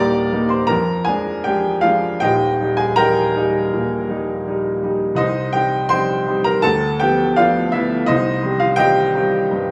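A clear, open baby grand piano plays alone, up front and with long sustain, in this brief, bittersweet and passionate excerpt of a romantic classical character piece in Eb major, moving at a rubato 76-86 BPM in 4/4 from Eb through diminished colours toward C minor, spanning Eb1 to D6 and set in a moderate recital hall reverb.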